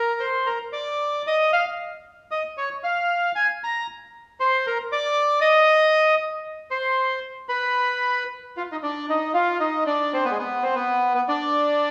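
A vintage, band-limited sound from a live small-room performance opens this dramatic, tense tango excerpt in 4/4 at 115 BPM with a rubato feel, where a solo bandoneon sits up front with a reedy, warm tone bathed in wet large studio reverb, ranging from Ab3 to Bb5 across its opening section before shifting to a new section at 8.8 seconds and playing on until 11.9 seconds.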